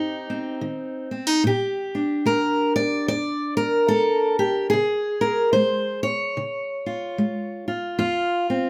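A fingerpicked steel-string acoustic guitar opens alone at 0.0 seconds, placed up front with the warm ring of fresh strings and a touch of finger squeak. This short solo folk fragment, cut from a longer piece, moves at an unhurried 73 BPM in 4/4, with eighth notes carrying a gentle swing. The harmony sits in B-flat major, tuned slightly high to A4 = 441 Hz, passing from C minor to B-flat 6 at 1.4 seconds, then to D-flat at 4.7 seconds before settling on an F power chord. The guitar spans from low F2 up to D5, giving the lines a full, concert-quality body. A moderate studio ambience with a short half-second decay frames the instrument, and the mood comes across as warm and hopeful.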